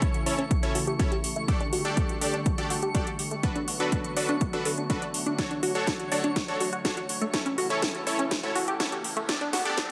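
A punchy, overdriven electronic kick sits up front with a house kit of cracking snare and metallic hats, driving this euphoric, expansive progressive house build-up, cut from a longer piece, as a drum fill arrives at 5.4 seconds. A tight, detuned sequenced synth plays arpeggios under a filter sweep, while a punchy supersaw stab with delay and a smooth, warbling vintage pad with lush chorus pump against the kick over chords moving from A through Gsus2, Bm7 and Dmaj7. A twinkling granular texture shimmers in the background, a round analog bass is barely audible beneath, and a very quiet riser creeps in at 7.5 seconds.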